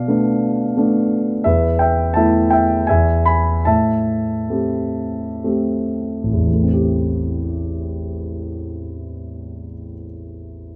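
A lone grand piano opens this brief classical fragment, its natural, up-front tone carrying a bittersweet, brooding mood in an unhurried triple metre with a free, rubato feel. The harmony moves from Bm7b5 through Esus4 and E before settling on Am7, and the playing reaches from A1 up to B5. Between 1.4 and 6.5 seconds the pulse slows, drawing out that harmonic arrival. At 6.5 seconds the music moves into a new section that runs until the fragment is cut off at 10.8 seconds. A light reverb and a dark, warm production give the lyrical solo a warm glow.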